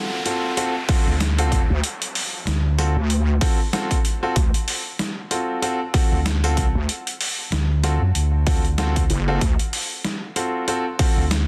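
A heavy, detuned wobble bass built from square and sine waves drives this gritty, swaggering glitch hop excerpt, arriving at 1.7 seconds up front with chorus and tube saturation. Alongside it, an overdriven fingered electric bass adds a dark, round, amped tone. A punchy, layered electronic kick, overdriven and re-recorded in a small room, anchors the 95 BPM groove in 4/4 with a swing on the 16ths. A sampler-style boom bap kit supplies compressed, pitched-down hi-hat and a high-tuned snare with overdrive. A clear grand piano plays stabs over a D7#9 chord from the very start, its long sustain shaped by sidechain pumping and tape echo, while an electronic downlifter sounds during the first 4.4 seconds. The mix carries light reverb and a dense, heavily limited modern master.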